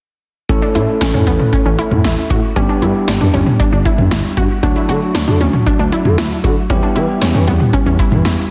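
Wistful yet upbeat, this short synth-pop passage cut from a longer piece moves through A, G, D and E minor over a straight 4/4 pulse, with an electro analog drum machine up front supplying a deep kick, punchy snare, metallic hats and toms. A smooth, sawtooth-edged synth bass with portamento and vibrato glides beneath a bell-like, clean tine electric piano, while a detuned unison pluck spins delayed arpeggios with a lush, warbling vintage character. A moderate hall reverb adds space around the dense, heavily limited modern master, with all four parts running from 0.5 seconds to the end.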